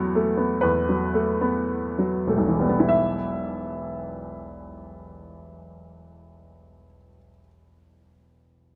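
A brilliant, worn baby grand piano sits up front in a large studio with a moderate reverb, in this short fragment of a romantic classical character piece in E minor. Played solo in 4/4 with free rubato at a slow 46-66 BPM, the opening slows down over its first 2.9 seconds on a B5/E harmony before settling onto E minor as a new passage begins. The piano spans from the deep bass at E1 up to F#5 across its 8.8 seconds, and the mood is bittersweet and stormy.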